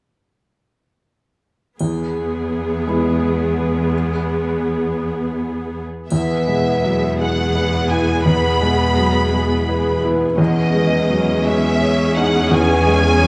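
A rubato 6/8 feel carries this sorrowful, moving cinematic score fragment, where a soft, felt-muted upright piano, smooth, even violas and up-front cellos holding a low bass begin at 1.8 s over a faint, dry triangle, before a lush violin section takes the melody at 6.1 s alongside a ringing, fingerpicked concert harp in arpeggios, all bathed in a moderate scoring-stage reverb.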